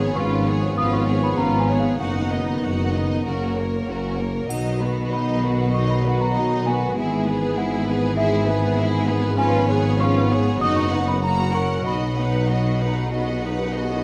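Mischievous and playful, this whimsical cinematic cue is cut from a longer film score and moves at an easy, straight pulse in four. A bell-like, delicate celesta carries the sweet melody up high, joined by a close, smooth violin section that plays the tune with even vibrato. A second violin section adds a focused line beneath, while lush violas fill in the accompaniment. In the background, a dark, punchy French horn section holds sustained chords over a low end of mellow tuba, a rich bowed cello section and a double bass section. A soft triangle and cymbal swell with dark cymbals appears at 4.5 s and again at 11.9 s, and the music sits in a reverberant scoring-stage space with a dark, warm production.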